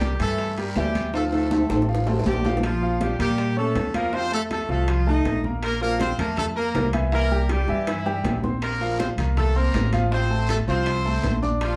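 Sunny and danceable, this salsa cut from a longer piece moves at 160 BPM in F major. A punchy, vibrato-laden horn section carries the melody up front over a woody, thumpy pizzicato upright bass and a clear, intimate baby grand piano whose action noise is audible. Tight, high-tuned bongos, thin-skinned congas and ringing metal-shell timbales sit in the background, along with a raspy, vintage guiro that drops out at 2.6 seconds and returns at 8.6 seconds. A drum fill arrives at 1.1 seconds, and the whole band is heard from further back in a small, reverberant room.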